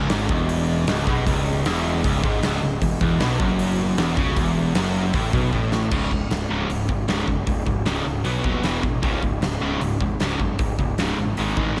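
A straight 4/4 pulse at 154 BPM drives this menacing hard rock passage in C# minor, cut from a longer piece, with a huge, up-front arena drum kit of boomy kick, fat snare, hi-hat and bright crash cymbals ringing in a hall. Two overdriven electric guitars play the riff together throughout: a cranked stack guitar with a bright, picked edge, and a sludgy, dark one sitting further in the background. Beneath them a picked electric bass growls with fuzz and overdrive, heard both direct and through an amp. During the opening stretch a very quiet, airy and breathy vintage synth pad holds sustained chords, its detuned, warbling tone softened by chorus, a slow attack and a long release, before it stops at 5.9 s. A drum fill from 5.5 s launches the second half, where the riff moves through C#5, B5, E5 and G#5 power chords, all within a small room ambience.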